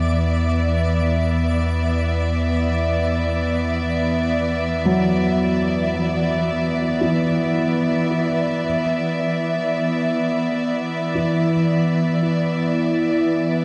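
A serene, reflective ambient passage in free time, cut from a longer piece, opens with an intimate, sul tasto chamber string section holding softly bowed sustained chords over a deep, ominous, rumbling bass drone and a very quiet, sparkling granular texture. A felt-muted upright piano with audible action noise adds mellow arpeggios through delay from 4.9 seconds, and a warbling analog drone with chorus sits in the background from 9.6 seconds, the whole set inside a huge, wet reverb space.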